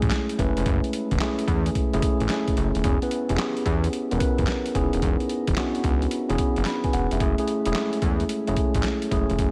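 A mellow, clean tine electric piano, a fat, detuned sawtooth bass with a saturated filter pluck, and a gritty, pitched-down sampler-style drum kit with a thumpy kick, medium-tuned snare, handclaps and hi-hat all open this confident, bouncy new jack swing groove at 110 BPM, swung on the 16ths in F# minor. The electric piano carries the accompaniment through a shimmer reverb, moving from F#m7 to C#m7 at 2.8 seconds and back at 7.2 seconds. The compressed, tape-toned drums and thick, sustained bass sit up front alongside the keys in light digital ambience, and this short cut from a longer piece runs 9.5 seconds.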